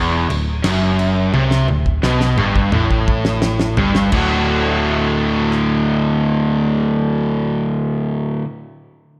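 A crunchy overdriven guitar with slapback echo plays up front beside a bright, cranked stack guitar with overdrive, both picking a D mixolydian riff in this confident, sunny classic rock piece at 86 BPM, over a round hollow-body short-scale picked bass and a dry, damped 70s drum kit with a fat snare, tight kick and dark cymbals that plays from 0.3 to 5.7 seconds with a fill starting at 1.3 seconds, all set in a concert hall reverb that gives a big arena sound.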